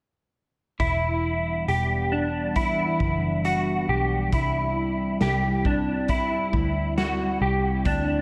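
Dream pop with a hazy, haunting mood, this short excerpt opens at 0.8 seconds with a clean, fingered electric guitar arpeggiating up front through ensemble chorus and delay, a round, foam-muted picked bass, and a raw garage drum kit with a punchy kick and a medium-tuned snare in a bright stone room, before a warbling, nostalgic tape-like pad with a slow attack and chorus slips in at 1.2 seconds beneath a plate reverb as the chords move from Em7 to C.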